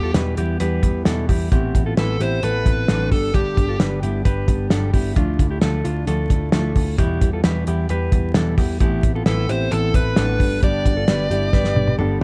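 Dark, dry production with a layer of vinyl crackle frames this bittersweet, wistful slice of jangly indie pop, moving at 132 BPM in a straight 4/4. Up front sits a cloth-damped, thuddy drum kit with a tight kick, a medium-tuned snare, hi-hat and toms, its top end rolled off, closing with a fill from 11.5 seconds. Beneath it, a vintage, foam-muted picked electric bass gives round, punchy low notes, while a full-bodied jumbo steel-string acoustic guitar is fingerpicked throughout, finger squeaks audible on the strings. A mellow, clean electric guitar adds fingered arpeggios in the middle register. An overdriven lead guitar with a smooth tone and analog delay carries the melody in two short phrases, at the start and again from 9.3 seconds, over chords cycling through Em, Amadd9, G and Dmadd9.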